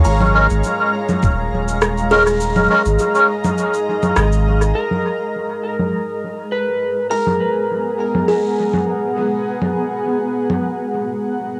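Ambient dub at 102 BPM in 4/4 with a light sixteenth-note swing, in G# dorian, with a hazy, spacious mood; it is cut from a longer piece. A cloudy, evolving granular pad holds sustained chords up front throughout, moving from A#m7 to G#m9 at 4.8 s, while a deep, round sine sub bass sits beneath it until 4.7 s. Electronic cabasa, congas and rim click run through a low-pass filter and dub echo, joined briefly by a muffled, thumpy, pitched-down kick, and a reedy, breathy melodica adds stabs in the opening seconds. A buzzing, woody kalimba plays ringing arpeggios through analog delay and plate reverb, with a filter sweep on it early on, and it returns later. In the second half a slightly broken-up electric slide guitar carries the melody while filter sweeps move over the drums and pad, and the recording has the soft character of a home cassette made in a modest room.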